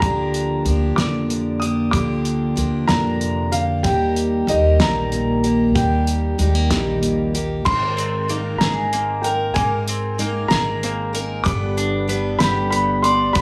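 A 6/8 pulse at 63 dotted-quarter beats per minute, kept straight, carries this bittersweet, stirring indie folk passage, cut from a longer piece. A cloth-damped, thuddy drum kit sits up front with a fat snare, tight kick, dark cymbals and hi-hat, its saturated, gritty tone rolled off at the top. Beneath it a growly pizzicato upright bass on steel strings holds the low end. A woody upright piano carries the melody high in its range, while two steel-string acoustic guitars fill the accompaniment: a full-bodied fingerpicked jumbo and a bright, freshly strung picked dreadnought. The harmony moves from Bb6/D to Eb, then Abadd9 and G, and at 7.7 s a picked mandolin joins with double-string arpeggios that build the arrangement. Moderate large-studio reverb and a small room ambience give the ensemble a close yet spacious setting.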